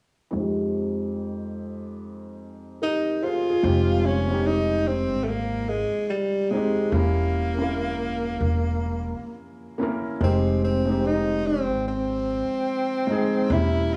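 A slow, swung hip hop groove at 73 BPM in 4/4 carries this hazy, melancholic fragment in F minor, cut from a longer piece and tuned slightly sharp to A4 = 441 Hz. A soft, felt-muted upright piano opens at 0.3 seconds with a filter sweep, its intimate, mellow chords dulled further by a low-pass filter and cassette tape coloring. A warm tenor saxophone takes the solo melody from 2.8 seconds, close-miked and forceful, with jazz-style vibrato and a punchy edge, also passed through cassette tape. At 3.6 seconds a woody, thumpy pizzicato upright bass with steel strings joins in the low register, and the piano, saxophone and bass all sit up front. The harmony moves from Fm9 to Edim7 and back to Fm9, while moderate spring reverb and the small-room ambience of a home cassette recording add to the hazy atmosphere.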